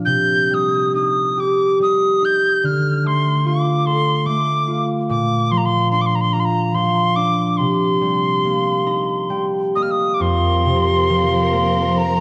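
Bathed in the reverb of a recital hall, this haunting, mournful Celtic slow air in C dorian drifts in a rubato 3/4 at 66-75 BPM, its pure, chiffy wooden whistle singing the melody with vibrato and tape echo over a bright, ringing fingerpicked concert harp that moves through Cm, Dm, Bb and Cm7 and adds a fill at 8.4 s, before a rich, softly bowed string section enters at 10.2 s on a sustained Fsus4 as the piece is cut off.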